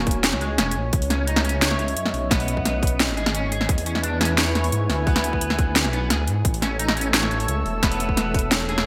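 Lightly reverberant, 1980s-style digital production frames this spacious, cinematic half-time drum and bass cut at 174 BPM in C# minor, where a deep, rumbling detuned saw bass sits up front beneath a moody analog pad pumping with sidechain and chorus, a twangy, slightly broken-up electric guitar picks arpeggios through ensemble chorus and digital delay, and an overdriven, hard-clipped electronic kick joins a layered kit of cracking snare and bright hats in gated reverb, the kick dropping out from 0.6 to 0.9 seconds as the chords move from F#add9 through C#madd9 and E7 to A.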